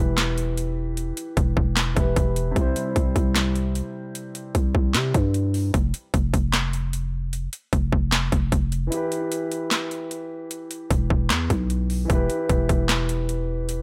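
A dark, boxy concert grand piano, filtered and trailed by analog delay, opens over a growling, buzzy 808-style bass moving from Em to C in E phrygian, setting an eerie, melancholic trap mood at 151 BPM with a half-time feel. An overdriven electronic drum kit sits up front with a hard-clipped kick, sharp snare, handclaps and metallic hi-hats. The piano drops out at 5.8 seconds and returns on Em at 8.9 seconds, all within an echo-heavy studio reverb in this short excerpt.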